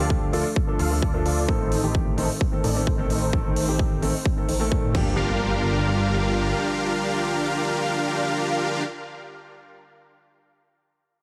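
A powerful, euphoric festival progressive house excerpt opens with a huge, detuned supersaw riff up front, carrying cassette-tape grit, filtering and dub echo over a deep-toned grand piano with its own echo, a lush chorused pad in the background and a menacing, saturated saw bass, all pumping against a punchy, tape-warm electronic kick and a big-room kit of crash and crisp hats. A very quiet electronic impact enters at 4.9 seconds, just before the drums drop out at 5.0 seconds, and the bass then stops at 6.5 seconds beneath the heavily compressed radio-style sound.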